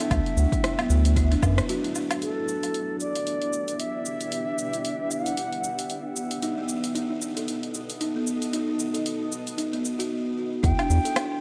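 A swung sixteenth-note groove in 4/4 drives this earthy, hypnotic organic downtempo excerpt. An overdriven deep house kit of hi-hat, rim click, shaker and woodblock runs throughout, its hits trailed by analog delay. A punchy, overdriven electronic kick and a round, deep analog bass with a wave-folded edge, the bass sitting up front, appear only briefly at the opening, then return at 10.6 seconds. A cloudy granular pad holds detuned, blurred chords from start to finish, pumping with sidechain and bathed in its own reverb, while a buzzing kalimba plucks woody arpeggios through analog delay, pausing after 2.1 seconds before coming back. Over this, a close-miked bansuri sings an airy bamboo melody with vibrato and tongued notes, roughened by vintage 12-bit sampler grit and echoed by delay, all within an echo-heavy mix of light digital ambience.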